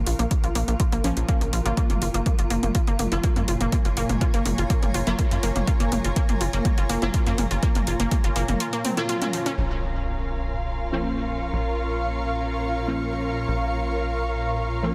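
This excerpt from a longer melodic techno piece opens on a swarming, wave-folded drone, a granular cloud pad fading in, and bright synth brass stabs set in the background with chorus, phaser and delay, all in Bb minor at 123 BPM in a straight 4/4. Almost at once a tight sawtooth sequencer bass and a lush, detuned unison pluck arrive, the pluck playing arpeggios under a filter sweep and echoing through delay, while the harmony moves from Bbm to Gbmaj7 at 1.8 s. An overdriven deep house kit of hi-hat and toms is joined by the punchy, up-front electronic kick, which drops out at 8.2 s, and the sidechain pumping on the bass, pluck, drone, pad and stabs gives the passage a breathing, dramatic drive. At 9.6 s an electronic impact hits as the chords return to Bbm, the pluck and kit fall away, and a dark, woody studio string section enters with bowed, sul tasto sustained chords and vibrato. The cinematic mood is framed by light digital ambience and a dense, heavily limited modern master.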